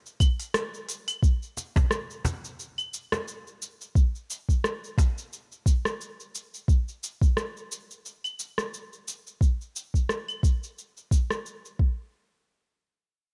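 Earthy and mystical, this downtempo groove in 4/4 rolls along with a gentle swing on the sixteenths. An organic electronic drum kit of cabasa, claves, crisp hi-hats and rim clicks sits up front over a soft electronic kick, both with the character of a small room. A woody cajon with faint snares joins close and dry between 1.6 and 5.1 seconds, and the whole fragment, cut from a longer piece, carries very little reverb.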